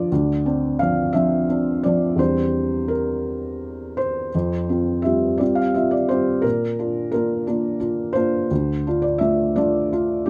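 Close, detailed microphones and a nearly dry room place the piano up front, so every soft, muted note sounds intimate and near. This short passage, cut from a longer neoclassical minimalist piece, has a peaceful, intimate mood. A felt-muted upright piano plays solo throughout, from 0.0 to 10.3 seconds, ranging from D2 up to F5 with a mellow, natural tone. The playing moves freely in a rubato 6/8, unhurried and gentle. The harmony passes through Dm7, Cadd9/E, Fsus2 and Bb before settling on Dm at 8.5 seconds.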